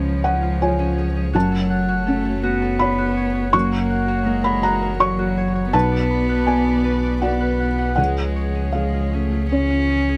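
In a rubato 3/4 at 82 BPM, this longing, reflective neoclassical passage in F# harmonic minor, cut from a longer piece, moves from C# through F#m, F# and Bm back to C#. A felt-muted upright piano carries the accompaniment with a mellow, intimate tone, audible action noise and short sustain, while a warm cello sings a second line with light vibrato and an airy sul tasto bow, and a deep, full sine sub bass with octave sits up front. In the background, a dark chamber string section holds soft-edged sustained chords. A bright, ringing Celtic harp plays fingerpicked arpeggios touched by slapback echo, the whole captured with close, detailed microphones and little reverb.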